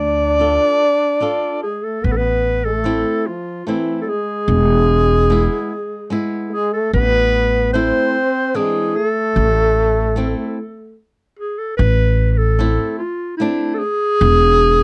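Festive yet soulful, this klezmer piece in A harmonic minor moves at a relaxed 74 BPM in 3/4, cut from a longer performance and captured as a dry, close 1970s-style studio recording with light reverb. Up front, a mellow, breathy clarinet carries the melody with vibrato, subtone and scooped notes in a jazz style, while a warm trombone sings a second line with its own scoops and vibrato until it drops out at 11.0 seconds, as the band hits a brief stop before the final stretch. Underneath, a woody, thumpy pizzicato upright bass on gut strings anchors the harmony, and a fingerpicked flamenco guitar, entering at 0.4 seconds with audible finger squeak, adds acoustic accompaniment over chords moving from Dm to Am and E.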